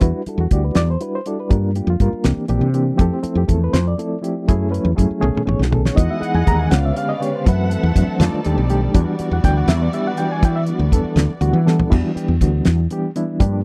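A dry, close 1970s-style studio sound frames this slick, funky stretch of electric jazz fusion in E minor, moving at 81 BPM in a straight 6/8 and cut from a longer piece. Up front, a reedy electric piano with fast tremolo carries the rich extended chords from Em9 through Fmaj9 and B13, while a round, punchy fretless bass and a damped drum kit with a fat snare and tight kick hold the groove, the drums adding a fill from 5.2 to 6.0 seconds. A lush, bowed string section with vibrato joins at 6.0 seconds for sustained chords, and the electric piano plays a fill just before a brief new section arrives at 11.9 seconds.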